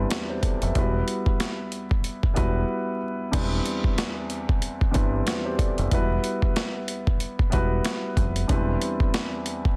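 A dense, heavily limited master with vinyl crackle and a dry sound frames this reflective, gritty boom-bap hip-hop excerpt at 93 BPM with a swung sixteenth feel, where an up-front, dark, mellow baby grand piano with long sustain moves between Cmaj7/E and Emadd9 over a round, punchy fingered electric bass and a compressed sampler-style drum kit with a thumpy kick, high-tuned snare, hi-hat and crash, marked by a short break from 2.7 to 3.3 seconds before the second section begins.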